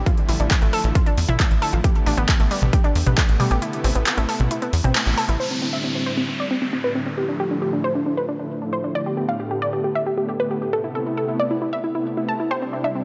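A tight, driving sequencer bass opens this soaring, euphoric uplifting trance excerpt at 135 BPM in A minor. It is joined almost at once by a lush supersaw pad holding sustained chords, a round, nasal analog pluck spinning arpeggios through chorus and delay, and an overdriven big-room dance drum kit with metallic hats, handclaps and toms. A punchy electronic kick sits up front until it drops out at 3.6 seconds, while the bass, pad and plucks breathe with sidechain pumping. At 5.4 seconds the drums, bass and arpeggios stop, and filter sweeps move through both the pad and a detuned unison pluck that now carries the melody with delay, as a downlifter sounds for a few seconds. The analog pluck flickers back briefly near 12.5 seconds over harmony circling Dmadd9/A, Gadd9/A, Amadd9 and Cadd9, all set in light reverb with a softened top end.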